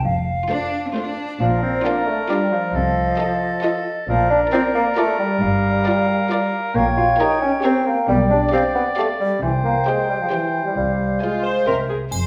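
A playful, whimsical cinematic film cue in 3/4 at 135 BPM, set in Bb major and heard as a short portion of a longer piece. A small, bell-like celesta sounds delicately in the background at the very start, while a hollow, pure-toned concert flute carries a second line and a warm double bass section with soft, sliding portamento anchors the low end beside an intense cello section. Just after, the string body fills in: a clear, lush violin section takes the melody in the background, a focused second violin section adds a supporting line, and smooth, even violas supply accompaniment, all bowed with vibrato. From 1.4 seconds a distant, roomy classical wind group joins, with a warm oboe on a second line, a lightly vibrato bassoon in accompaniment and a mellow, tight French horn section holding sustained chords, as the harmony drifts through diminished and minor colours toward a C chord. The celesta returns at 11.7 seconds, and a triangle with a dark edge rings out at 12.1 seconds to close the passage. 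The whole ensemble sits in a reverberant recital hall with a quirky, storybook charm.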